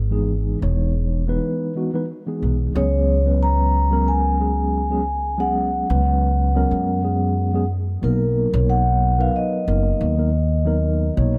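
A lightly swung sixteenth-note feel in 4/4 underpins this relaxed, blissful sunset chillout excerpt, with a dark, woody, thumpy pizzicato upright bass on gut strings sitting up front from the start. A clean, mellow tine electric piano, heard through its built-in speakers and treated with tape echo, carries the accompaniment from Emaj7 through C#7sus4 to Bmaj7. At 2.8 seconds a soft-mallet vibraphone with its motor off takes the melody in a ringing, metallic tone through digital delay, the whole ensemble set in a small room with light reverb.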